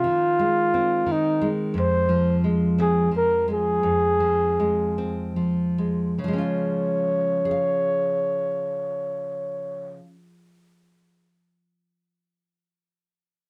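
In a straight three-four lilt, this tender, nostalgic acoustic folk-pop ballad pairs a mellow, close-miked flugelhorn, carrying the melody up front with breathy, jazz-style scooped notes until 10.0 seconds, with a full-bodied fingerpicked nylon-string guitar in a deep classical vein that continues alone to 11.3 seconds, all in light reverb as the pace slows between 1.7 and 6.2 seconds.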